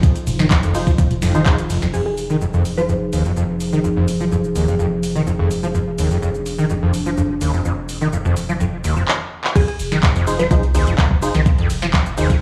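Driving and gritty, this acid house cut at 126 BPM in F dorian rides a squelchy, saturated acid bass riff with a resonant filter sweep, sitting up front over a round sine sub bass and a thumpy kick that drops out after 1.6 seconds and returns at 9.6 seconds. A booming analog drum machine supplies a crisp snare, metallic hats, handclaps, shaker, ride, crash and toms, with a drum fill just before the kick's return, while a moody, detuned pad with chorus and phaser holds sustained chords, opening on Fm7, until 9.0 seconds. Hollow organ stabs with analog delay and a glassy wavetable pluck with tape echo appear in short bursts, all set in light digital ambience.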